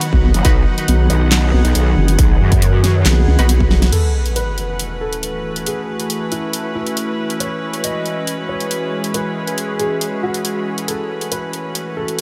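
Heavy wobble dubstep in half-time at 138 BPM in F# dorian, menacing and dreamy with a huge ambient reverb, opens on a drop where a nasal vowel-sweep wobble bass and a growling, detuned growl bass sit up front beside a punchy, overdriven electronic kick, a dubstep drum kit with a huge snare and bright hats, and bold orchestra-hit-like synth stabs in the background, over a morphing wavetable pad and a distant, reedy chamber string section that both pump beneath, until a drum fill at 3.7 seconds gives way at 3.9 seconds to an electronic sub drop impact and a dark, worn grand piano melody with audible action noise that carries on over F#m7 and C#m chords to 12.2 seconds.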